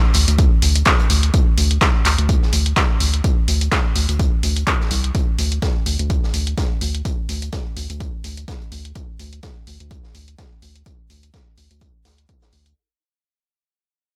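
A dry, up-front mix opens this gritty, hypnotic acid house fragment, fading out over its 12.8 seconds as a swung groove of a punchy analog kick and drum-machine handclaps and hi-hat, both re-recorded in a small room, drives a deep, round, dark wave-folded analog bass with a filter sweep and sidechain pumping, while a vintage acoustic kit's rolled-off hi-hat and medium-tuned snare sit in the background.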